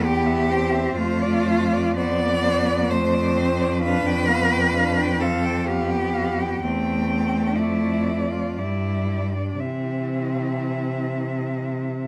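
Tender and warm, this slow classical passage for a cello quartet drifts in 3/4 at 55-66 BPM with a rubato feel, moving through C major harmonies from C/E through Dm7/F and G7/F before settling on C at 9.6 seconds. A rich, expressive cello sings the high melody with vibrato and portamento, a second rich, focused cello sits up front with the inner line, and a third cello adds gliding, vibrato-laden accompaniment. Beneath them a clear, close bowed cello anchors the bass, all four heard together through the 12.1 seconds of this fragment in a moderate stone-room reverb.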